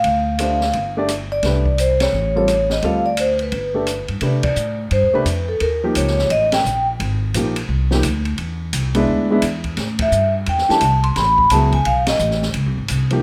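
Swung eighths drive this playful small-group swing and bop cut, with an open drum kit of dark cymbals, a high-tuned snare and a boomy kick, and a woody pizzicato upright bass set up front, all punctuated by band accents. A mellow, ringing vibraphone played with soft mallets and a slow motor vibrato carries the melody, pausing from 6.8 to 10.0 seconds. A warm, natural baby grand piano enters at 0.4 seconds with accompaniment under a light reverb as the harmony moves through altered dominants and lush major-ninth colours.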